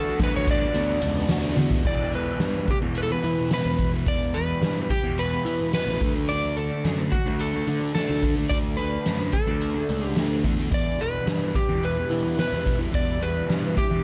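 Set in a small, lightly reverberant room, this mysterious, trippy psychedelic rock excerpt in E minor at 108 BPM pairs an up-front slide guitar, played with fingerpicks and slightly broken-up through analog delay, with a dark, double-tracked fuzz guitar riff coloured by phaser, a round, punchy overdriven picked bass and a soft-mallet drum kit with a boomy kick and fat snare that plays a fill at 1.6 seconds, while a very quiet, buzzing tanpura drone shimmers underneath until 8.8 seconds and a swirling, warbling vintage string machine adds faint sustained chords at the opening and again from 11.2 seconds.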